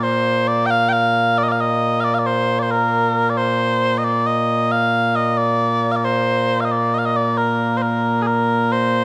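A mellow set of small bagpipes opens alone at 0.0 seconds, carrying this stirring, ceremonial piece of Scottish traditional pipe music through to 9.0 seconds. The tune moves in 6/8 at 90 beats per minute, counted in dotted quarters, with a straight feel in B-flat major. Sweet and continuous, the pipes sit up front with vibrato, ranging from Bb2 up to G5. Close, detailed microphones catch the instrument within a moderate recital hall reverb that lends a stately air. Cut from a longer performance, the passage holds a single section of solo piping from start to finish.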